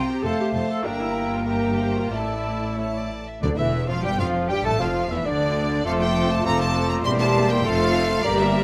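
Set in a quick 2/4 that pushes and pulls with rubato, this urgent, stormy passage from a classical-period symphonic movement opens with the orchestra's strings, winds and brass. An intense, vibrato-laden violin section carries the melody, while a focused second violin section and an airy flute weave second lines in the background. Rich violas supply the accompaniment, mellow French horns hold sustained chords, and a smooth-topped double bass section anchors the bass. At 0.2 seconds a roomy clarinet adds another second line, a warm bassoon joins the accompaniment and an even, distant cello section joins the bass. At 3.4 seconds a cor anglais with light vibrato enters on a further second line, while calf-headed timpani struck with medium mallets sound until 4.3 seconds. A moderate scoring-stage reverb gives the ensemble a sense of space.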